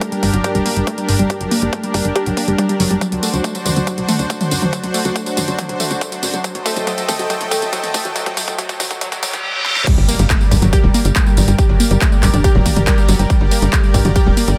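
Soaring and bittersweet, this uplifting trance passage at 140 BPM in G harmonic minor builds for 9.9 seconds under a filter sweep on the detuned unison pluck arpeggios with tape echo, a lush sustained supersaw pad and a tight sequencer bass pumping against an overdriven, punchy kick up front, while a big-room drum kit with a huge snare plays a fill and very quiet riser and reverse cymbal effects lead to an impact as the drop lands over Gm.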